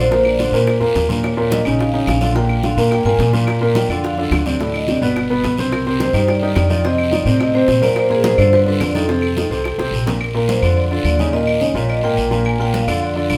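Sunny and sophisticated, this Afro-Cuban jazz passage in Bb major moves at a brisk 214 BPM in straight 4/4. A metallic vibraphone with a fast motor vibrato carries the melody over an intimate, up-front grand piano whose action noise and long sustain come through, while a thumpy pizzicato upright bass with steel strings anchors the low end. Medium-tuned congas and woody claves sit in the background beside a raspy guiro heard close and dry; very quiet, round low-tuned bongos drop out at 10.1 s during a drum fill, and the band shares a stone room with a wet reverb.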